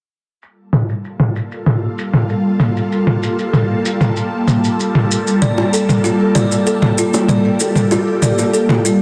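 Sunset chillout in G minor at 96 BPM, this wistful excerpt opens on a Gm9 chord with up-front electronic shaker and toms, layered, tape-warm and low-pass filtered, under a filter sweep from 0.4 seconds. An ethereal, detuned pad of sustained chords enters at 0.9 seconds, its slow attack and long release colored by ensemble chorus and phaser. A woody, ringing kalimba with tape echo adds arpeggios at 5.4 seconds, round, low-tuned bongos sit in the background, and moderate plate reverb surrounds the dense, heavily limited master.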